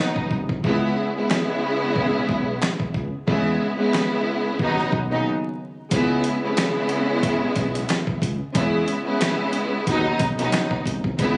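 Gritty and tough, this boom-bap hip-hop excerpt rolls at 91 BPM in C# minor with a light swing on the sixteenths. A lush symphonic string section opens the track at 0.0 seconds, its bowed ensemble sound carrying vibrato and expressive portamento, sitting up front and filtered at both ends of its range. A sampler-style drum kit follows at 0.2 seconds, compressed and pitched down, with a thumpy kick, a medium-tuned snare, hi-hat and handclaps pressed forward in the mix. A smooth, mellow synth bass blending sawtooth and triangle tones joins at 0.3 seconds, holding sustained low notes with a fast attack. The harmony cycles through Badd9, C#m7 and E6, while the whole recording carries a phone-in-the-room feel with studio ambience, vinyl crackle and a dulled top end.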